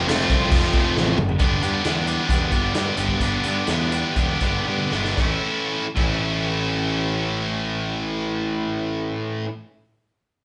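The sound is that of a band playing live together in a large studio room, with a moderate reverb and a top end that stops at 10.8 kHz. This swaggering, confident classic rock fragment sits in A mixolydian, tuned to A4 = 438 Hz, in a straight 4/4 somewhere between 114 and 137 BPM. A bright, overdriven electric guitar, double-tracked and up front, carries the riff, while a growly fuzz bass, picked and overdriven, drives the low end. The vintage acoustic drum kit has a punchy kick, a medium-tuned snare and a natural, rolled-off sound, working crash, hi-hat and toms and throwing in drum fills before each change. The chords move from F to G6 to A, and the band slows down from 1.4 to 5.2 seconds before landing on the A chord, after which the drums drop out at 6.1 seconds and guitar and bass play on to the end.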